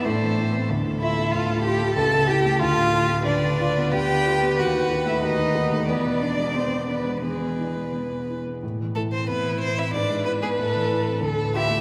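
Graceful and cheerful, this quick classical-period movement for piano quartet moves in 2/4 at around 85-95 BPM in A minor, with a rubato feel that lets the phrases breathe. One rich violin carries the melody with vibrato, portamento and expressive bowing, while a second violin, focused and distant in tone, plays a second line with its own vibrato. A warm cello adds its own vibrato-laden, sliding second line beneath, and a dark, mellow baby grand piano sits up front with a worn, long-sustaining accompaniment. The harmony turns from Am through Dm and A/C# toward B7/D# and E7, settling on E at 7.2 s before the opening material returns at 8.6 s. The quartet sounds as if placed in a vast cathedral whose wet, lingering echo surrounds the playing, and the passage is cut from a longer piece.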